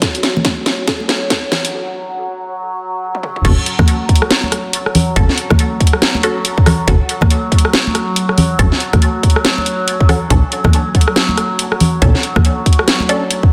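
A brooding, meditative deep dubstep cut opens on a build-up: a resonant, phaser-treated drone of moving overtones and muted, filter-plucked dub chord stabs are shaped by filter sweeps, while a tight electronic kick and a garage kit with cracking snare and bright hats play fills around a break, and soft-handed, high-tuned congas enter at 0.4 seconds. At 3.4 seconds the half-time drop lands as a deep, wobbling, detuned sawtooth bass with chorus arrives up front, and at 10.3 seconds the harmony shifts to a rootless minor seventh chord. Echo-chamber reverb, plus dub echo on the stabs and congas, lends depth to a dense, heavily limited mix.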